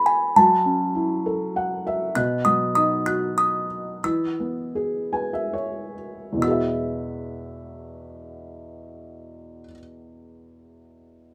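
In a straight 3/4 lilt that slows between 2.1 and 6.4 seconds within a range of 64-101 BPM, this innocent, tender lullaby in E major sets a tinkling, slightly out-of-tune music box melody up front over a muted, intimate felt-muted upright piano whose audible action noise and gentle fills colour the accompaniment, all in light reverb, with the music box falling silent at 9.7 seconds as the piano rings on to close this portion of a longer children's piece.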